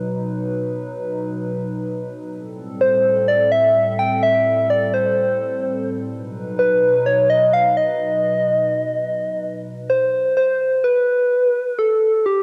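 At a straight 127 BPM in 4/4, this intricate, glitchy IDM excerpt opens on a hollow, flute-like pad holding detuned chords through B and Am7 until 9.9 seconds, while from 2.8 seconds a round, keys-like FM lead with vibrato sings bright and up front, its melody carried on tape echo and soaked in spring reverb with the softened haze of a home cassette recording.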